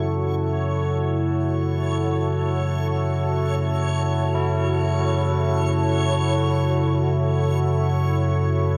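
From the first moment of this dark ambient drone fragment in free time, a deep, rumbling drone sits up front beneath a moody, detuned sawtooth pad holding a sustained F#m chord, while a bright, reversed granular texture hovers high above and very quiet, mellow tubular bells ring out soft metallic arpeggios, all soaked in a lush hall reverb that makes the whole piece feel vast, dreamy and ominous.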